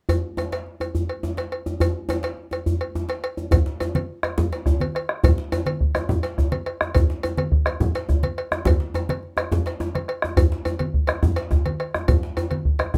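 A metallic cowbell and a medium-tuned djembe with metal rattles open this powerful, earthy West African drum ensemble excerpt, moving at 140 BPM in a straight 12/8. At 3.5 seconds the round bombo arrives up front alongside bright, low-tuned congas played with soft hands, filling out the groove through to the end. The close, detailed sound carries little reverb, with the dry cowbell set against the djembe's more distant, large-room ring.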